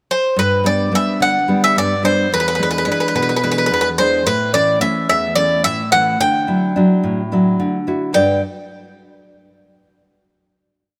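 In a straight 7/8, this short, sunny Greek folk piece opens with the bouzouki's pickup at 0.1 seconds. The nylon-string guitar joins at 0.4 seconds with woody, fingerpicked bass notes and oompah chord figures on old strings, moving through G, E7, A and Dadd9. Up front, the bouzouki's metallic double strings, some doubled at the octave, carry an ornamented modal melody, and the piece settles on a final G chord at 8.2 seconds that rings out in a moderate plate reverb.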